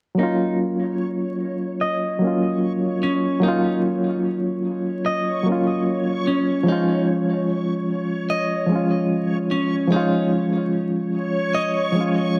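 Trip hop at 74 BPM in Eb minor with a 16th-note swing, brooding and hypnotic, this excerpt moves from Ebm7 to Db at 6.7 seconds under a haze of vinyl crackle, light reverb and digital ambience. A barky, reedy electric piano sits up front as accompaniment from the start, its clean tone given tremolo, a low-pass filter and tape echo, while a picked clean electric guitar plays arpeggios through vintage 12-bit sampler grit and its own tape echo. From 0.8 seconds a reversed, detuned backwards texture swells in softly on a sustained Db5, granular and dreamy with a long release and built-in reverb.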